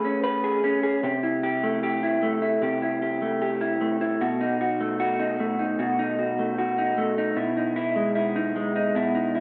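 Indie pop at 76 BPM in a straight 4/4, sunny and nostalgic, this brief excerpt features a lone electric guitar through a small old amp, up front, twangy and slightly broken-up with a lo-fi, compressed, fingered tone, analog chorus, warbly pitch drift and slapback echo, moving through Amaj9, C6, B7 and Emaj7/B across 9.4 seconds in a dark, wet studio reverb.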